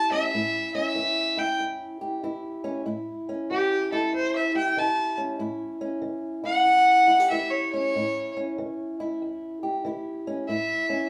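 A bowed fiddle opens this short, rollicking cut of acoustic country blues, taking a solo over an A7 chord through the first 2.9 seconds while the fingerpicked guitar plays beneath it. The fiddle carries the melody with a reedy, gut-string tone, sitting up front yet with a slightly distant quality that lends the playing a soulful edge. The ladder-braced acoustic guitar supplies the accompaniment in a lower register, its old strings giving a dark, woody, boxy character. The music moves in a swung 4/4 feel, and a new section begins at 2.9 seconds and runs to the close at 11.1 seconds. Both players sound as though they are performing live together in a small room, with a wet studio reverb adding a gentle tail around them.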